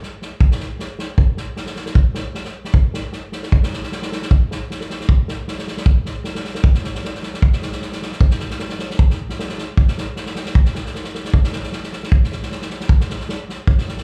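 This Balkan folk excerpt moves at a brisk 154 BPM in a straight 2/4, with a virtuosic, restless mood. An unplugged acoustic drum kit carries the whole passage from start to finish, working its kick drum and snare drum. Played with bundle sticks, the kit sits up front with a mid-forward, rolled-off character: the snare is medium-tuned and the kick is tight. The drums have a small-room feel of their own, while a moderate recital-hall reverb adds space around the performance. The piece shifts into new sections at about 1.2 seconds and again near 7.4 seconds, keeping the momentum unsettled as the fragment runs its short course.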